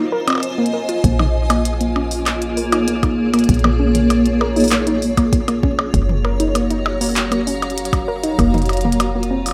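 IDM cut from a longer piece, intricate and melancholic, opening with a short break where a cloudy, evolving granular pad in built-in reverb holds sustained chords up front while a warbling, lo-fi dusty pluck with chorus and tape echo spins dark arpeggios, and a glitchy kit of clicky hats, handclaps, toms and percussion blips enters at 0.3 seconds through its own tape echo. At 1.0 seconds a deep, up-front electronic kick and a woody, round FM bass with tube saturation arrive as the harmony moves from Fm7 to Bbm7, later shifting to Gbmaj7 and closing on F7(no3). The rough home-demo mix sits in a moderate studio room.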